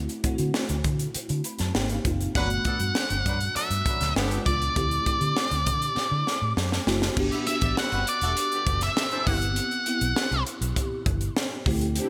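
Polished 1980s jazz-funk pop with an urban, upbeat mood, this excerpt moves at 100 BPM in a straight 4/4 and is cut from a longer piece. A bell-like FM electric piano, treated with phaser and ensemble chorus, sparkles through rich chords such as D9, Abmaj9 and Gmaj9, adding a fill from 1.1 to 2.4 seconds, while a vintage muted fingered bass sits dark and round underneath. The crisp fusion drum kit is up front and gritty, with a high-tuned snare, punchy kick and pumping gated reverb, and it plays a fill before the harmony shifts to Em9/G. At 2.4 seconds an octave-fuzz lead guitar takes the melody with a distorted, picked edge, joined by a smooth horn section with light vibrato carrying a second line. A lush string machine appears only at the very end, sounding its sustained sawtooth chords within a bright digital production and light reverb.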